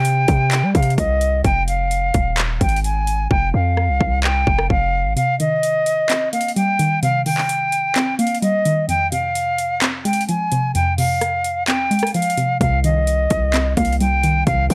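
Menacing and brooding, this trap excerpt moves at 129 BPM in 4/4 with a half-time feel, built on C minor and F minor chords that shift to C minor seventh. An airy silver concert flute with vibrato and a soft attack carries the melody throughout, placed up front and darkened by a low-pass filter. A deep, boomy 808-style bass with a fast attack and a noise layer anchors the opening, drops away at 5.2 seconds and returns at 12.6 seconds. The electronic trap kit, with metallic hi-hats, a hard-clipped kick, handclaps and rim clicks, is pushed through overdrive, though its hi-hats fall silent briefly from 3.3 seconds and its kick is muted while the bass is gone. At 5.2 seconds a round, detuned, wave-folded pluck with chorus and a low-pass filter enters as a gentle accompaniment. The whole recording sits in a dry, gritty hardware sound with a digital ambience.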